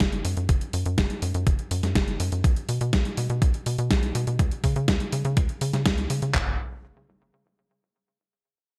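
Bittersweet and melodramatic, this italo disco cut sets a tight, punchy sequencer bass, built from sawtooth and square tones with a filter pluck and quick decay, against an up-front, sampler-style 12-bit drum machine. The thumpy kick, handclaps and toms are overdriven and carry gated reverb and large-room ambience, as do the medium-tuned snare and hi-hat, which drop out at 6.3 seconds while the bass drives on until 6.6 seconds. The bright 1980s-style digital production sits in light reverb.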